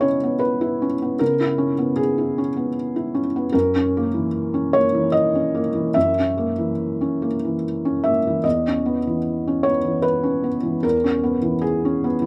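Neoclassical minimalist piano in a wistful, intimate mood, this 12.3-second cut from a longer piece features a solo felt-muted upright piano moving in a rubato three. Its soft, mellow tone has a short sustain and audible action noise, sitting up front across a range from E2 to E5. The open-air recording is dry, and the harmony drifts from C#m7 to F#7 at 3.5 seconds before settling on C#m7/E.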